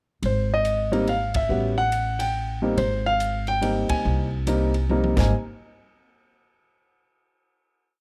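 Up front, a baby grand piano with short sustain and a touch of plate reverb plays call-phrase motifs and syncopated rootless-voiced comping in this brief, relaxed jazz trio waltz, over a woody pizzicato upright bass in a two-feel and a dry cocktail kit with dark cymbals, a high-tuned snare, a punchy kick and a stick ride pattern, swinging through band accents at 1.3 and 3.8 seconds and a drum fill into a final hit at 5.3 seconds.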